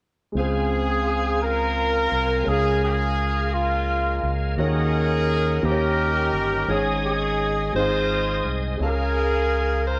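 A straight 6/8 pulse at 57 BPM in dotted quarters carries this hopeful, soulful slow gospel excerpt in Db major, with a woody upright piano and a punchy, up-front fingered electric bass through an envelope filter under a clear alto saxophone melody with vibrato, joined in carrying the melody by a tight, distant horn section, while a reedy tonewheel organ sustains chords through a fast rotary speaker and chorus vibrato with audible key click, the band playing live together in a moderate stone room as the harmony moves from Dbmaj7 to Db6.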